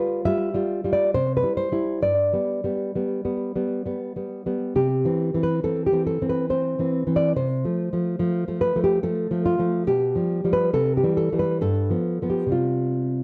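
The sound is dry and close, in the manner of a 1970s studio recording, with little reverb and the guitar placed up front. This romantic solo piece for nylon-string classical guitar moves in an unhurried 3/4 at 64-74 BPM, played rubato in C major with the tuning set to A4 = 441 Hz. The acoustic guitar carries the whole 13.2-second passage, its thumb-plucked tone warm, spanning G2 to E5, with audible finger squeaks and a touch of slapback echo. The harmony opens on G7 and moves through C, G and F/C before returning home and closing on a bare C5. The mood is warm and nostalgic, a short cut taken from a longer piece.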